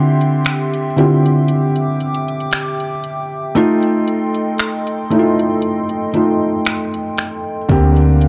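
Moody and late-night, this slow contemporary R&B fragment in D minor moves at 58 BPM with a gentle 16th-note swing. A felt-muted upright piano, intimate and vintage in tone, sits up front over a hollow, flute-like pad with chorus, while a smooth, electronic drum kit of finger snaps, metallic hats and a soft kick enters at 0.2 seconds, and the chords pass from Dm11 to F7 at 3.6 seconds. At 7.7 seconds a deep, round 808-style bass arrives on Bb6/D, capping a dark production bathed in light reverb and digital ambience.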